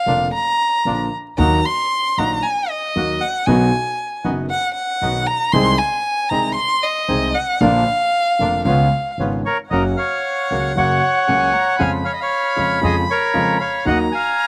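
Passionate and nostalgic, this tango at 116 BPM in 4/4 moves with a rubato feel, its harmony starting in Eb dorian before shifting to F# major at 9.7 s. A single bowed violin carries the opening as a solo until 9.7 s, up front with vibrato, soft attacks, portamento and an expressive, slapback-echoed voice. Beneath it, a dark, mellow concert grand piano supplies accompaniment with deep bass, intimate smoothness, a vintage character and audible action noise, while a pizzicato upright bass with gut strings gives a woody, thumpy foundation. A reedy, warm bandoneon sits up front with airy stabs touched by slapback echo, and a second bandoneon with a reedy, dark, airy tone takes the melody from 9.5 s in the background. The sound is dry and outdoor, with little reverb and a layer of vinyl crackle, and this passage is cut from a longer piece.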